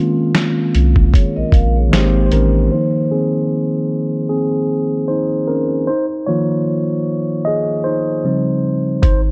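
Dreamy and nostalgic, this short lo-fi hip hop fragment settles into a swung, relaxed 4/4 groove under a dark, softly ambient production. A mellow tine electric piano carries the harmony throughout, its clean, up-front tone colored by cassette tape and a low-pass filter as it moves from a Db6/9 chord to Abmaj9. Muffled, pitched-down sampler drums with a thumpy kick and medium-tuned snare join almost at once alongside a deep, round sub bass. A soft-mallet vibraphone adds a brief, ringing metallic line through delay between 1.1 and 2.1 seconds. From 2.7 seconds the electric piano plays alone under a filter sweep, settling on Ab6 before an Eb13 near the end, and the drums and bass return for a final moment at 9.0 seconds.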